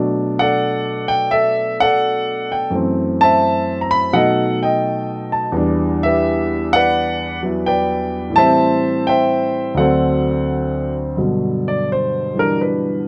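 A warm, natural baby grand piano sits up front with long sustain in this swinging, sophisticated solo jazz excerpt in G major at 85 BPM, its swung eighths moving through Bm7, F#m7b5, B7, Em7, Am7 and D7 before landing on Gmaj7 as a new section opens at 11.2 seconds, all framed by light reverb and cut from a longer piece.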